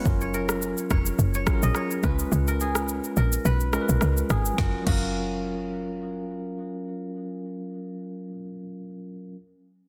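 A tine electric piano and a kora open this sunny, joyful afrobeats excerpt together, the clean piano sitting up front as if heard through its own built-in speakers while the bright, fingerpicked kora rings crisply through a tape echo. A woody log drum bass and a deep house drum kit join almost at once, and the tempo settles at 106 BPM in 4/4 with a light 16th-note swing in F# major, tuned slightly below standard pitch. The bass is punchy and percussive, with an FM tone, a noise layer, a fast attack and decaying notes, while the layered, produced kit pairs a deep kick with a woody, softly clipped snare, rim clicks, shaker and crash cymbal. The harmony moves from F#maj7 to C#7 and back to F#maj7 as a second section begins at 4.6 seconds. The drums stop at 5.0 seconds, the kora at 6.3 seconds and the bass at 7.6 seconds, while the piano carries on until 9.4 seconds. Light digital reverb surrounds a dense, heavily limited modern master.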